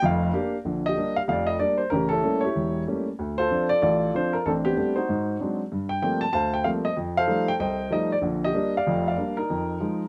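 A brisk swing at 190 BPM in 4/4, with eighth notes lilting at a 62% swing, drives this short jazz passage cut from a longer piece, set in Bb major. A solo upright piano carries everything, its woody tone and long sustain sitting up front and spanning from E1 in the deep bass to A5 at the top. The mood is relaxed and unhurried despite the quick tempo, and the piano has a warm, inviting character. The harmony moves through rich jazz colours, starting on Bb6, passing through A7b9, Dm7, Am11, Ab7#11, Gm11 and F9, returning to Bb6 around 8.2 seconds and landing on Fm7 near 9.5 seconds. Close, detailed microphones capture the instrument intimately, with a light touch of reverb adding a little air around it.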